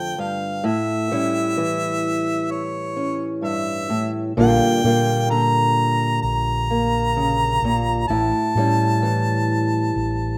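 Intimate and wistful, this brief acoustic folk excerpt at 64 BPM in a straight 4/4 pairs a clear, up-front harmonica melody with light vibrato and slapback echo over a woody, boxy fingerpicked ladder-braced acoustic guitar on old strings, joined at 4.4 seconds by a round, punchy fingered electric bass, moving through Dm, A7 and Gm7/Bb in a rough home demo mix with light reverb.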